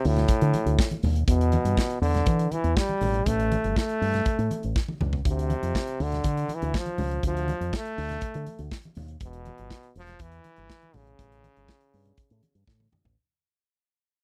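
A bright, punchy trombone with light vibrato leads this driving, danceable disco cut at 121 BPM in D dorian, playing a forceful, jazz-style solo up front over chords moving from D5 and E5 to A7 and Dm. Beneath it, a fingered electric bass with an envelope filter sits warm, direct and up front, while a polished studio drum kit with a tight kick and medium-tuned snare drives the groove, adding fills at 4.8 and 12.7 seconds. Very quiet, low-tuned congas with a thick, damped skin fill out the dry, close 1970s-style sound as the whole passage fades out.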